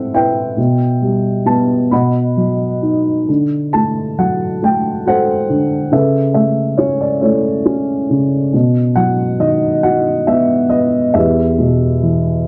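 The recording has a dark, warm studio sound, set in a wet reverb that lends the piano a short halo of room. This is lyrical classical solo piano with a wistful, shadowed mood, heard as a brief portion cut from a longer work. A single upright piano is the only voice from 0.0 to 12.5 seconds, its tone mellow, woody and boxy, and placed up front. The playing moves in 6/8 with free rubato and spans the instrument from E2 up to B5. The harmony drifts through Am, Em/B and B, leans on D7 and Aadd9/C#, then returns to B before settling on Em at 11.2 seconds.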